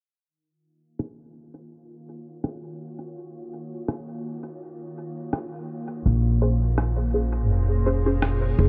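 A dry, low-pass filtered mix opens this short, cut-from-longer ambient dub fragment, as a filter sweep and a fade-in on the pad shape its whole length. The mood is deep and meditative, moving at 83 BPM in 4/4 with a light swing on the sixteenths in Eb dorian. A soft, organ-like pad holds sustained Ebm9 chords, pure and full-bodied, with detuned unison voices, a moving notch, slow attack, long release, ensemble chorus and built-in reverb. A sampler-style electronic rim click enters at 1.0 seconds, compressed, pitched down, muffled and tape-warm, trailing a dub echo. At 6.1 seconds the harmony shifts to Bbm9 as a woody, dark pizzicato upright bass arrives up front. A muted, deep chord stab joins at 6.4 seconds, its detuned sawtooth and pulse tones shaped by a filter pluck with fast attack and short decay, and colored by phaser, lush chorus and dub echo.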